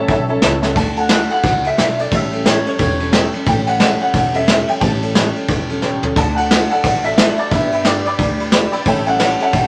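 A moderately reverberant studio sound frames this rollicking, retro rockabilly clip at 178 BPM in D major with a swung feel, where a twangy, slightly broken-up electric guitar through a small old amp carries the melody with harmonic tremolo over a bright, full-bodied picked acoustic guitar, a thumpy gut-string upright bass and a soft, roomy brush kit with a punchy kick, while a detuned, jangly honky-tonk upright piano sits in the background, dropping out after 0.7 seconds and returning at 6.2 seconds after a drum fill at 5.8 seconds.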